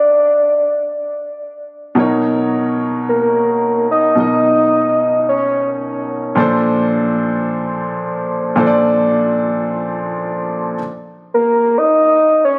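A soft, octave-layered synth lead carries the melody up front, its round, dark tone built from triangle, sawtooth and sine layers over a sub octave, with a fast attack, sustained notes, vibrato, chorus and delay. This soulful, relaxed amapiano cut, taken from a longer piece, sits in 4/4 with a swung sixteenth-note feel, and the lead opens the clip in a stripped-down drop passage before a clear grand piano enters at 1.9 seconds. The piano plays intimate, polished accompaniment with long sustain and audible action noise, moving from Bmaj9 to A#maj9, while the lead continues above it until 6.1 seconds. After the piano stops at 10.8 seconds, the drop returns, and the lead re-enters at 11.3 seconds to close the clip alone. The sound carries light reverb and studio ambience, captured on a phone in the room with compression.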